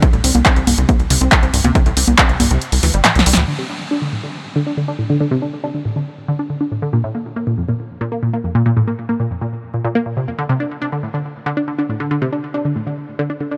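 Bittersweet and driving, this uplifting trance excerpt opens with an overdriven, punchy electronic kick and a dry analog drum machine of congas, handclaps, low-pass-filtered hi-hat and snare, joined by a tight, nasal sequencer bass pumping with sidechain beneath a lush, detuned, wave-folded unison pluck that plays arpeggios through a filter sweep, sidechain pumping and delay; the kick drops out, a drum fill and band accent lead to the drums and bass stopping at 3.5 s, and the bright pluck carries on alone over chords moving from D5 to Bb5 and back, all in light reverb.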